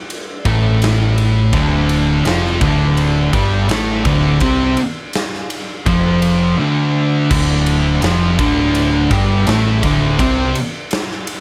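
A big acoustic rock kit opens this hypnotic, ominous stoner and doom metal excerpt at 0.1 s, its punchy kick, medium-tuned snare, crash and ride ringing in a bright stone room. At 0.5 s two thick fuzz guitars, one dark and one warm, join from the background, along with an overdriven, tube-saturated fuzz bass holding down the low end, before a tight, double-tracked distorted guitar adds its picked riff from 1.5 s across a single repeated D minor passage.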